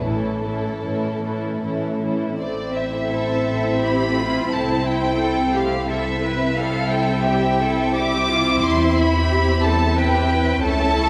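A violin section carries the melody up front, its smooth tone touched with light vibrato as it spans A4 to D6. This is a slow, tender romantic movement for string orchestra in A minor and 3/4, moving with rubato at 73-92 BPM. A second violin line adds expressive portamento beneath the melody, while a dark, woody viola section supplies the accompaniment. A lush, focused cello section and an even-toned double bass section share the bass. All five sections play throughout the 11.1-second passage, which opens on an A chord before turning to A minor at 2.4 seconds and moving on through C. A wet scoring stage reverb sets the ensemble further back in the room, and the passage is cut from a longer piece.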